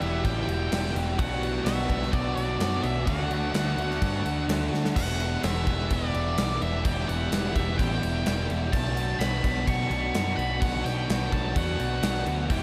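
A dark, fuzzy octave-fuzz lead guitar carries the melody high above this dreamy, blissful stretch of shoegaze-leaning dream pop rock, its distorted tone trailing into a diffuse ambient delay. Beneath it, a biting overdriven guitar sits up front playing a riff with a subtle chorus, while a second overdriven guitar lingers in the background with reverse reverb until 5.0 seconds, returning only briefly at the very end. A growling picked electric bass, amped and overdriven, stays prominent in the low end, and a gated 80s drum kit drives a straight 4/4 feel with a tight kick, medium-tuned snare and bright crash cymbals in a big, airy room. A drum fill at 4.7 seconds leads into the second section at 5.0 seconds as the harmony cycles through Em, Bm and D. The whole mix is soaked in a huge, lingering reverb that gives this excerpt, cut from a longer piece, its hazy, floating glow.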